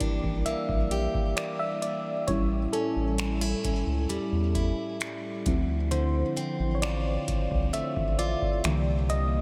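A dreamy, reverb-soaked mix with a huge ambient space frames this sensual, late-night contemporary R&B excerpt in D minor at 66 BPM, moving through Em7b5, A7, Dm7 and C9. Up front, a soft, full-bodied FM electric piano with chorus takes the solo across the full 9.4 seconds, while a picked, plugged-in steel-string acoustic guitar spins delayed arpeggios with a hint of finger squeak. Underneath, a round, nasal analog bass and a booming analog drum machine with a deep kick, metallic hi-hat and finger snaps, re-recorded in a large room, anchor the groove.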